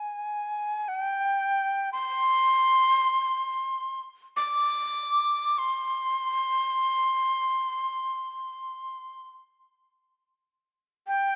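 Still and meditative, this excerpt of Japanese chamber music in free time features a solo end-blown bamboo shakuhachi, breathy and bright with a reedy straight tone and tongued chiff, placed up front in light reverb and sounding between G5 and D6 for its 11.4 seconds.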